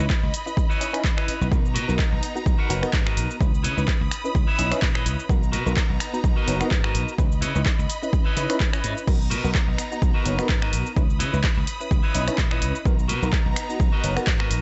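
A dry, dull-topped mix with little reverb and nothing above 7.9 kHz gives this filtered disco house cut a muffled, nostalgic haze, as every other part pumps with sidechain beneath the loud, overdriven electronic kick at 127 BPM in 4/4 with a light 16th-note swing in C# dorian, trading C#m9 and Bmaj7 throughout. A reedy electric piano with fast tremolo, phaser and 12-bit sampler grit carries the accompaniment, while a clean, scooped picked electric guitar riff, also gritty, rides over a punchy, bright slap bass. A lush, intense bowed violin section sustains chords with vibrato, and an overdriven analog drum machine adds crash, finger snaps, handclaps, hi-hat and shaker for a funky groove.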